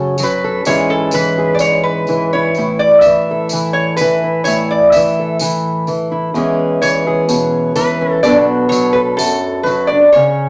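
A fingerpicked acoustic archtop guitar with audible finger squeak and a metallic, nasal lap resonator guitar, played with fingerpicks and a steel bar, open this peaceful, pastoral acoustic folk piece together at a slow 63 BPM in 4/4, the up-front resonator carrying a bright solo line over chords moving from F#m to Bm7 while a jingly tambourine sits low in the mix from 0.2 seconds, set in a wet studio reverb within a short cut from a longer piece.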